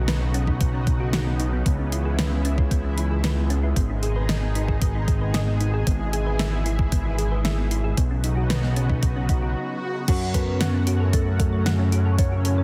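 A fat, detuned sawtooth bass sits up front in this driving, moody synthwave excerpt at 114 BPM in a straight 4/4, with a thumpy, sampler-style electronic kick pounding alongside it. A silky, bright analog string pad holds sustained chords through ensemble chorus and sidechain pumping, moving from Badd9 through C#m7, G#m and E/G#. Meanwhile, a round, tine-like pluck resembling a thumb piano runs mellow arpeggios in the background, touched with chorus and delay. A layered pop kit adds a fat snare, hi-hat and crash cymbal. An electronic swell rises at 9.3 seconds into a short break at 9.6 seconds. At 10.1 seconds the harmony shifts to F#m, where a velvety, smooth detuned synth lead carries the melody and a soft, pure synth bell with phaser traces a quiet second line above it, all within light reverb and a dense, heavily limited modern master.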